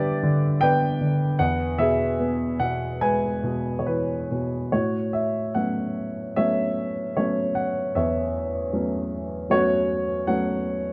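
Moving in a flexible, rubato 4/4 that drifts between 67 and 80 BPM, this brief classical fragment for solo grand piano carries a peaceful, lyrical mood in A major. The dark, mellow piano sits up front with a natural tone and short sustain, ranging from E2 to G#5 under light reverb. Harmonies pass from G to E before a new section opens at 4.7 seconds on an A69 chord, running until 10.9 seconds.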